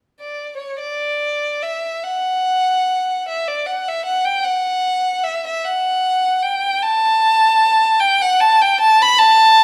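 A single bowed violin, rich and smooth with vibrato, carries this mournful, lonely classical fragment on its own, sitting up front in a reverberant stone room. The line stays high, between C#5 and B5, unfolding in a free, rubato 6/8 with uneven beats that lend it an expressive feel. Cut from a longer piece, it begins at 0.2 seconds and runs until 9.6 seconds.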